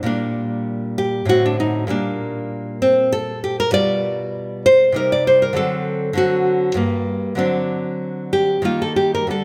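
A moderate reverb, like a scoring stage, lets the notes ring and settle for about two seconds around a single nylon-string guitar placed up front. This is a short section cut from a longer classical piece, a baroque-style dance in triple time with a grave, flowing mood. The guitar plays alone throughout, fingerpicked with a bright acoustic tone that reaches from its low bass strings up into the upper register. The phrasing is rubato, so the dance pulse stretches and gives. The harmony moves through minor chords and dominant sevenths, turning toward a G7 near 3.8 seconds and reaching an E-flat chord at 8.7 seconds just before the passage is cut off.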